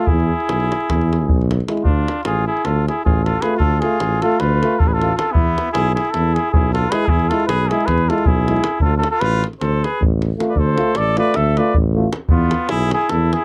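A cup-muted cornet with a soft, veiled tone leads this virtuosic, bittersweet Balkan brass band excerpt at 310 BPM in eighths in 9/8, carrying the melody over a bright trumpet second line, while a clear euphonium and a warm trombone (both distant and roomy, with light vibrato) supply accompaniment until 12.1 seconds, and an up-front tuba with a smooth top and a tight davul drive the alternating E and Dm harmony in a dry, close 1970s-style studio sound.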